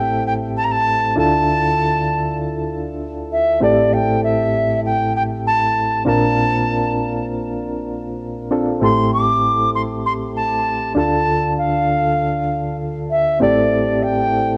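A straight, even 4/4 pulse carries this short pop excerpt, which feels uplifting and romantic. Throughout its 14.6 seconds, a silver concert flute sings the melody between D5 and D6 with an airy, straight tone and a crisp attack, sitting up front yet slightly distant, colored by cassette tape. Beneath it, soft electric-piano-like synth keys supply the accompaniment across a broad span from A1 to Bb4, their round, mellow notes striking quickly and then decaying, shimmering with chorus and tremolo and carrying the same tape color. The harmony drifts between Am7, Dmadd9, Bbadd9 and Dm, returning again and again to Am7. Light reverb and a small room ambience give the whole home cassette recording an intimate, homespun feel.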